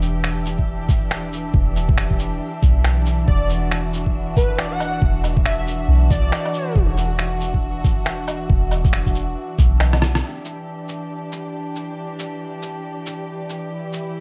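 A muffled, thumpy electronic kick, pitched down and compressed, anchors this wistful, nocturnal future garage excerpt with a swung feel, backed by a deep, round 808-style bass with tube saturation and sidechain pumping, and a small-room bed of shaker, finger snaps, woodblock, rim click and cabasa. Dark chamber strings hold bowed, sul tasto chords through a low-pass filter, a faint breathy wind-like texture hovers in the background, and an airy, detuned lead with chorus, delay, vibrato and portamento floats in at 3.3 seconds. The kick drops out at 9.7 seconds, and the bass stops after a short drum fill and band accent near 10.1 seconds, while vinyl crackle runs through the piece.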